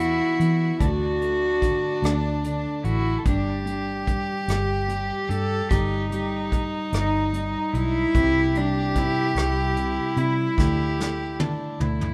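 A lightly reverberant sound frames this nostalgic, hopeful acoustic folk-pop ballad in G major, moving at a slow 49 BPM in a straight 6/8 and cut from a longer piece. A single bowed cello carries the melody up front with a pure, floating sul tasto tone. A lone violin adds an earthy, lightly vibratoed second line, a felt-muted upright piano with audible action noise gives mellow, intimate accompaniment, and a vintage foam-muted electric bass supplies dark, round support. A distant brush kit in a small room plays hi-hat, kick, rim click, snare and toms, closing with a drum fill from 10.6 s.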